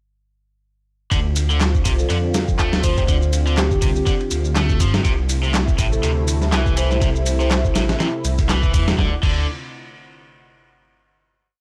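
At 1.1 s this energetic, funky breakbeat piece in D minor at 122 BPM drops straight in: a gritty, compressed soul break with a thumpy kick sits up front under a garage kit's claps, ride and shaker. A dark, rumbling detuned saw bass plays long gliding notes, and a bright, overdriven semi-hollow guitar riff repeats a 16-step sequence. A swirling phased analog pad pumps over Dm7 and C6, while a mellow soft-mallet marimba with tape echo adds short background phrases from 2.0 s, all before a closing section at 9.0 s in a dry, gritty hardware recording.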